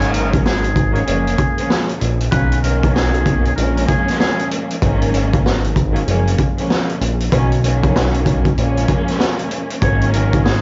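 Reflective and gritty, this boom-bap hip-hop excerpt rides a swung 96 BPM groove, with a raw garage drum kit, boomy in the kick and saturated in a small room, pushed up front beside a fat, detuned analog bass thickened by tube saturation. A lush symphonic string section bows expressive, vibrato-laden chords such as Ab7sus4, Gbmaj7 and Bmaj9 throughout, and the drums and strings carry a cassette-tape haze. Over them a distant, breathy trumpet with a metal mute plays a whispered, buzzy jazz-style melody with scooped notes and tape echo from 0.0 to 4.5 seconds, then returns briefly at 9.8 seconds.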